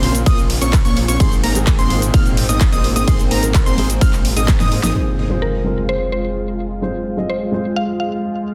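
Festival progressive house at 128 BPM with a euphoric, emotional mood, this short cut opens on a drop over Bbmadd9 and Abadd9 chords, where a punchy, overdriven kick sits up front beneath a big-room drum kit with a huge snare, handclaps, hi-hat, ride, shaker and low-pass filtered cymbals, a thick detuned saw bass, a huge supersaw riff tucked into the background with low-pass filter and delay, and catchy plucky arpeggios high above, all pumping together with a dark, intimate baby grand piano and a lush phased pad that carry on after a drum fill gives way at 5.0 s to an electronic impact and, from 5.4 s, a woody, round mallet-like FM pluck melody in a dense, heavily limited mix.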